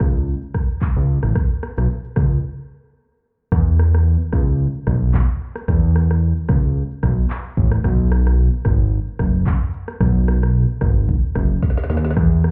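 A lightly swung sixteenth-note groove at 111 BPM in 4/4 drives this breezy, sunny afrobeats passage in E major, cut from a longer piece. The electronic afro-pop drum kit sits up front with handclaps, shaker, rim click, a woody snare and a deep kick, and it plays through the whole 12.5 seconds. Alongside it, a fat analog bass holds the low end between F#1 and E2, also up front, its thick, detuned tone blending sawtooth, square and triangle waves with ring modulation, a filter sweep, a fast attack and sustained notes. A break arrives at 2.4 seconds before the groove settles into its longer second stretch, and a drum fill at 11.6 seconds rounds off that section near the end of the excerpt. The whole mix sounds muffled, as if heard through a wall, with club reverb and EQ shaping it while the room itself stays fairly dry.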